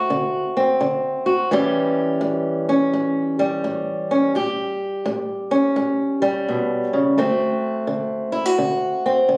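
Swaggering and rollicking, this short blues excerpt in A mixolydian swings at 85 BPM as a lone fingerpicked old ladder-braced acoustic guitar, dark, woody and boxy with old strings, sits up front under light club reverb with the sound of a phone recording in the room, moving from D7 to A7 at 1.5 seconds and back to D7 at 7.2 seconds.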